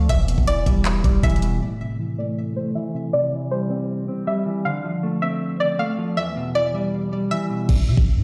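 A half-time trap beat at 158 BPM in A minor drives this menacing, hard-hitting hip hop excerpt, with a knocking kick, bright hi-hats, handclaps and crash from a tape-warm electronic kit and a deep, boomy 808-style sine bass, both dropping out by 1.6 seconds and returning at 7.7 seconds, where the hats are muted. Until 7.7 seconds, a dark, clean, fingered electric guitar plays compressed, low-pass-filtered accompaniment over Em, Am, C, Dm7 and Em, while a twangy, string-like resonator pluck carries a high, up-front melody coloured by chorus, phaser and delay, with a filter sweep running from 1.6 seconds to 7.7 seconds. Light reverb and digital ambience give the mix the feel of a big sound system in a bare room.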